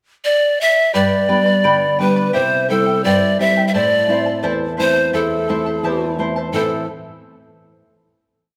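Andean folk in A minor at 86 BPM in a straight 2/4, earthy and festive: a breathy bamboo pan flute opens alone at 0.2 s, carrying an up-front, motif-based melody with vibrato and tongued chiff, before a shimmering, fingerpicked charango with double strings and an up-front, full-bodied nylon-string guitar playing oompah bass notes and chord figures join at 0.9 s over G, C and Am, all in a moderate concert hall reverb.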